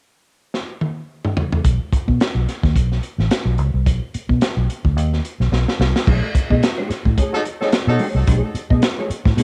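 Funk at 109 BPM in B mixolydian with a gritty, loose sixteenth-note swing: a crunchy, saturated breakbeat kit with dark cymbals and a tight kick opens with a fill at 0.5 seconds, a round, foam-muted fingered bass punches in up front at 1.6 seconds, a dark, clean, compressed electric guitar with ensemble chorus arrives on a B13 chord at 6.1 seconds, and a distant horn section with light vibrato and tape echo adds a brief second line, all steeped in the studio reverb and cassette grit of a home recording cut from a longer piece.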